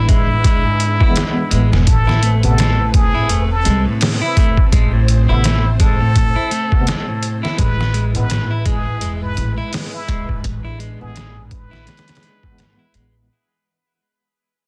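Melancholic and cinematic, this swung 84 BPM trip hop fragment sets a forceful, plunger-muted jazz trumpet melody with vibrato and tape echo over pitched-down, muffled sampler drums with a thumpy kick and overdriven grit, a woody pizzicato upright bass up front, dark picked clean electric guitar arpeggios through delay, mellow string-machine cellos with ensemble chorus in the background, and a barky tine electric piano with tremolo and 12-bit crunch entering at 1.0 seconds, moving from E to Amadd9 and back in a dry, dense mix that fades out from 5.7 seconds.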